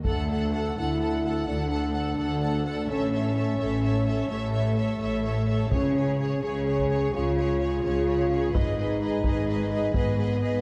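Heavy-sticked taiko drums, close and dry, open this majestic, triumphant cinematic cue alongside a focused bowed double bass section and a distant, lush viola section. The rest of the orchestra joins at 0.1 seconds, and the taiko drops out at 1.0 seconds as the full orchestral texture settles into its 12/8 metre: a rich violin section with vibrato carries the melody, supported by a smooth second violin line in the background. A mellow French horn section holds sustained chords at the fore, while an even cello section reinforces the low end beneath it. At 5.7 seconds the taiko returns, joined briefly by a very quiet timpani struck with hard mallets, as the harmony moves from D and A toward C# and G#m. A dark production and moderate scoring-stage reverb give the sound a broad, epic sweep, and the passage is cut from a longer piece.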